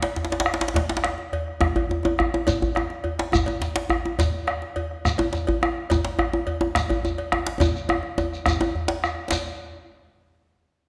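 A metallic cowbell and an up-front djembe open this powerful, driving West African traditional drum-ensemble excerpt at 140 BPM in 12/8, soon joined by a second, soft-handed djembe in the background and a round, up-front bombo, with a grainy, mellow shekere entering at 2.5 seconds, all set in a wet recital-hall reverb before a drum fill from 7.6 seconds leads into a new section.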